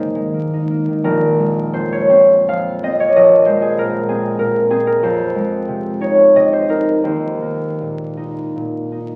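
A classical piece for solo concert harp, this brief cut from a longer work moves in a rubato 3/4 at roughly 79-96 BPM, its mood mysterious and gentle. The harp sits up front with a thumb-plucked, ringing tone that spans from Bb1 to Ab5, drifting through chords such as Abadd9, Bb9sus4 and Fm7 before settling on Eb5 at 7.1 seconds. A wet recital hall reverb surrounds the playing, while the crackle of a very old 78 rpm record lends an aged, dusty patina.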